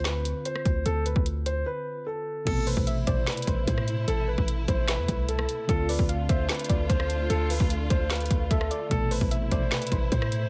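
Brooding and dark, this half-time trap excerpt sets a mellow, long-sustaining baby grand piano melody over warbling, detuned lo-fi synth keys with chorus and a deep, boomy 808-style bass, while an up-front electronic drum kit brings a hard-clipped kick, woody snare, metallic hats, handclaps, rim clicks and crash cymbal. After a brief break from 1.7 seconds, a close, bowed studio string section enters at 2.5 seconds with vibrato and portamento on sustained chords. A soft, round pluck with chorus and tape echo follows in the background at 2.7 seconds, all held in a digital ambience.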